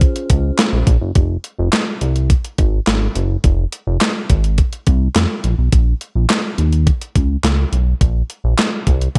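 Early-eighties boogie funk in F minor at 105 BPM, this funky, late-night excerpt opens with a very quiet, inharmonic FM synth chime ringing a high F6 and a mellow, slightly out-of-tune tine electric piano on a Bbm9 chord, both gone within the first second, leaving a dark, glossy chorused synth bass with pulse-width modulation and a moving notch filter to ride Fm and then Bbm from 5.4 s alongside an up-front, tape-warm 8-bit drum machine of thumpy kick, snare, hi-hat and handclaps with gated reverb, all set in a digital ambience.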